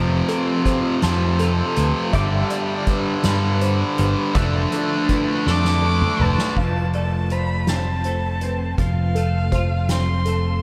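A punchy, amped fingered electric bass anchors this hopeful, soaring post-rock excerpt in F lydian at a slow 54 BPM in 6/8, joined up front by a bright, tight distorted guitar riff and by a very quiet, twangy pedal steel holding sustained chords, both of which stop at 6.6 seconds, while a clean, compressed twelve-string electric guitar and a soft, felt-muted upright piano weave chorused, delayed arpeggios in the background, a distant soft-mallet drum kit with dark cymbals and a rolled-off top plays a fill from 5.5 seconds, and a veiled, con sordino violin enters then with a bowed, delayed melody full of vibrato and portamento, the whole dreamy mix soaked in huge ambient reverb over chords moving from F to G to Dmadd9/F and back to F.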